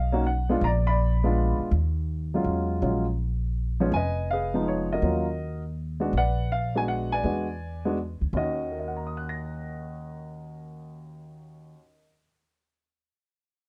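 Late-night and smoky, this jazz waltz moves at 163 BPM in 3/4 with a swung eighth-note feel, set in Eb minor and cut from a longer piece. A dark baby grand piano carries the melody across a broad range from Eb2 to Bb6, its mellow, natural tone sitting up front. Beneath it, a pizzicato upright bass on steel strings plays the bass line between F1 and Fb2, sounding woody, growly and thumpy, and it stops at 11.7 seconds while the piano continues to 12.3 seconds. The harmony leans on tense dominant colors such as Bb7b9 and Bb7b9b13, passes through Fm7b5 and a surprising E7, and settles on Ebm7 at 8.3 seconds. Close, detailed microphones and a light reverb keep the sound intimate and present.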